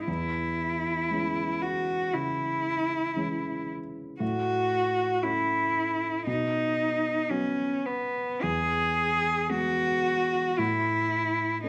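This is a romantic classical duo for cello and grand piano, cut from a longer piece and carrying a melancholic, elegiac mood. The tempo is unhurried and pulled freely in rubato over a four-beat metre. A single bowed cello sings the melody from 0.0 s to 11.7 s, its tone rich and even with vibrato and a smooth top, placed up front in the mix. The grand piano accompanies underneath for the same span at a lower level, its warm notes reaching down into the bass and decaying quickly. The harmony moves from C#m/E through A, B and E before settling on an open A5 chord near 10.6 s, all set in the moderate reverb of a recital hall.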